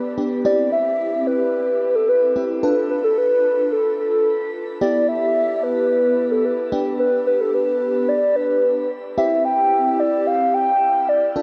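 This short pop excerpt in straight 4/4 opens with a hollow, woody synth lead carrying the melody over an FM electric piano layered with a soft pad, and both parts play together from the very start to 11.4 seconds. The mood is cool and nocturnal. The lead sits up front, a dark blend of square and triangle tones with a noise layer, vibrato, chorus, shimmer reverb and digital delay. Beneath it the lush, dreamy keys strike with a fast attack and then decay, their detuned tone colored by chorus, phaser and shimmer reverb. The harmony moves from C through Dm, Em and G before returning to C at 9.2 seconds, all bathed in a wet plate reverb with a long tail and a dark, warm production.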